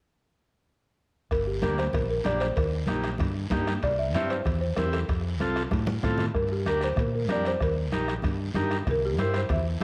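A woody, round marimba played with soft mallets carries the melody in this danceable, fiery cumbia excerpt, starting at 1.3 seconds alongside a bright, up-front fingered electric bass and a percussion section of bombo, guiro and timbales. A buzzy, overdriven vintage combo organ and ringing congas join at 1.6 seconds, the organ filling in accompaniment beneath the marimba line. The raspy, dry guiro sits close, while the soft-beater bombo, hard-hand congas and metal-shell timbales stay in the background. The harmony moves through G minor, E-flat, C and F before circling back, and a drum fill at 5.7 seconds pushes into the second pass. A moderate studio reverb surrounds the mix, and a worn cassette quality adds a warbly pitch drift that gives the whole track an aged character.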